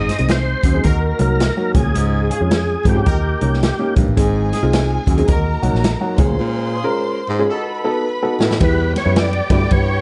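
Uptempo 1960s-style soul in Eb dorian at 108 BPM with a swung feel, urgent and passionate, cut from a longer piece: a gritty, overdriven tonewheel organ with chorus vibrato and slow rotary speaker carries the melody, dropping out at 3.9 seconds and returning at 8.6 seconds as the next section begins on Em. Beneath it a woody, slightly detuned upright piano accompanies, a close-miked baritone saxophone plays a mellow subtone riff, and a round, foam-muted electric bass sits up front with a swinging big-band drum kit with a punchy kick and very quiet, damped congas. A distant, tight horn section adds a second line, joined from 4.2 seconds by a lush bowed string section with portamento, before a break and drum fill lead into the change, all in a dark production with light small-room reverb.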